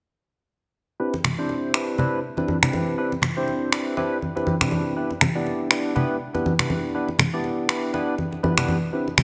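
A swung afro house groove at 121 BPM in 4/4 drives this short excerpt, its sixteenths pushed to a 57% swing and tuned to A4 = 439 Hz. Layered, produced electronic finger snaps sit up front, entering at 1.2 seconds, with soft clipping giving their snare an edge. Low-tuned congas come in at 1.1 seconds, thin-skinned and played with soft hands, their acoustic, live-room character close in the mix. A bright, barky tine electric piano plays clean stabs between B3 and D5, moving from Cmaj9 to Em7 at 5.0 seconds while a filter sweep runs through its part, colored by analog chorus, a low-pass filter and delay. A moderate recital hall reverb and small room ambience surround the dense, heavily limited master, lending the warm, spiritual mood an airy depth.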